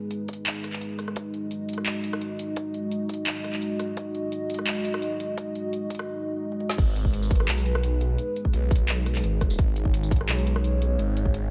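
A half-time 171 BPM groove in 4/4 drives this dark, cinematic drum and bass cut in G# minor, tuned to A4 = 439 Hz, where a moody, chorused analog pad sustains a G#m chord with sidechain pumping over a tight, up-front electronic kick and a layered kit of woody snare, metallic hats, rim click, handclaps, tambourine, toms and crash under light reverb, building until a drum fill at 6.5 seconds leads into the drop at 6.8 seconds, when a thick, swirling, saturated detuned saw bass with phaser enters low and up front.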